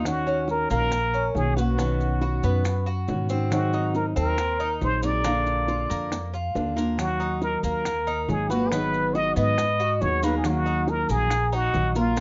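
A fingerpicked jumbo steel-string guitar with audible finger squeak, a metallic, double-strung Cuban tres playing arpeggios and a woody, thumpy pizzicato upright bass open this nostalgic, danceable Cuban son and guajira excerpt in Eb minor at 139 BPM. From 0.1 seconds a plunger-muted trumpet takes the solo melody up front with a wah-wah tone, light vibrato and scooped jazz phrasing, while round, low-tuned bongos sit softly in the background and grainy maracas add a mellow texture. The sound is close and dry on the percussion, with moderate studio reverb and a darkened top end as the chords move from Ebm7 through Ab7 and Bb back to Ebmadd9.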